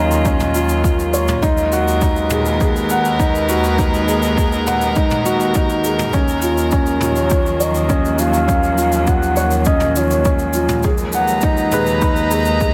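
Set in a small room with a touch of light reverb, this intimate, moving slice of piano and strings electronica is cut from a longer piece and moves between dark minor-ninth and minor-seventh chords. A soft, felt-muted upright piano sits up front with audible action noise and tape echo, playing a riff over sustained chords from a dark, airy-bowed string quartet and a floating, bowed double bass section, both pumping with sidechain. A shaker and toms played with brushes come in at 0.1 seconds and an overdriven, deep electronic kick at 0.3 seconds, before a velvety, chorused synth lead with vibrato takes up the melody at 7.0 seconds.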